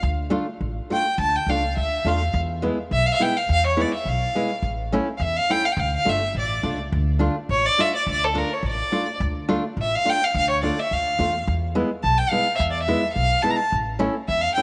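A rich, bowed violin and a woody, dark upright bass open this festive yet bittersweet klezmer excerpt together, with a fingerpicked nylon-string guitar joining at 0.3 seconds. The single violin carries the melody with smooth, even vibrato, sounding up front yet slightly distant, while the plucked steel-string bass sits close underneath. The classical guitar supplies acoustic accompaniment with a gentle glow and the occasional finger squeak. The music moves in a straight two-beat metre through a harmonic minor progression built on D minor, E and A, and the same passage is played twice. The pace gradually speeds up across the whole clip, lending it a growing sense of celebration. Light reverb places the trio in a small room, and the excerpt breaks off at 14.6 seconds as part of a longer piece.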